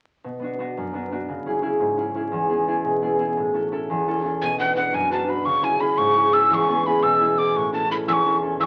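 Driving, dark and lively, this Celtic folk excerpt moves at 115 BPM in a straight 6/8 in B dorian, tuned to A4 = 443 Hz, cycling through Bm, C#m, E and A. A ringing, thumb-plucked concert harp sits up front from 0.2 seconds, and at 4.4 seconds a breathy wooden whistle takes the melody, close-miked, mellow and unsteady, with a crisp chiff and vibrato. Moderate studio reverb and the crackle of a very old 78 rpm record give the recording an aged character.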